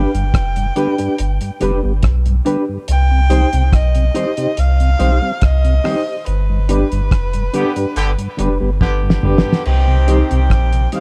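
Meditative and serious, this roots reggae excerpt sets an intimate bowed erhu melody with portamento and tape echo over a round sine sub bass and an up-front, cloth-damped, thuddy drum kit, with a lightly overdriven tonewheel organ turning through a slow rotary speaker while a mellow, clean electric guitar with spring reverb and reedy electric piano stabs with fast tremolo sit in the background; a band accent arrives at 6.3 s, a tight vintage horn section adds a second line from 7.5 s, and a drum fill leads into the change to C minor at 9.7 s, all in a dark small-room production.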